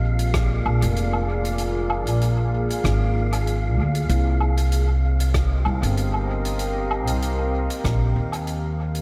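A deep, moody pad with a slow attack, chorus and its own reverb opens this hazy ambient dub excerpt at 96 BPM in C minor, sustaining chords that shift from Bb7 to Cm7 at 4.1 seconds. Up front from the first moment, a woody, growly pizzicato upright bass carries the low end with a touch of tube saturation. An airy, breathy, wind-like texture hangs high above on a single tuned note, dark and reverberant. A soft-mallet kit of hi-hat, rim click and woodblock enters at 0.2 seconds, its natural hall tone trailing dub echo, over a 16th-note swing. An overdriven electronic kick, deep and layered yet sitting in the background with a small-room grain, stops at 8.0 seconds as the whole piece fades out in light studio reverb.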